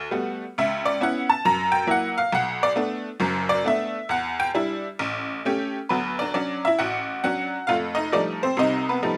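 Swung eighth notes at 135 BPM in 4/4 carry this short solo jazz passage, though the pulse bends freely with a rubato feel. A lone tack piano plays throughout, its metallic, jangly tone and short sustain giving the sophisticated, swinging mood a vintage character. For the first 5.9 seconds it plays a honky-tonk style solo over rich harmony in D major, moving from Gmaj9 and Bm11/C# through F#7, Bm7, Em7 and A7. A new section then begins on Dmaj7 and closes on F9 at 7.7 seconds, before this fragment of a longer piece cuts off at 9.2 seconds. The instrument sits bright and up front in a dry, open-air recording with little reverb.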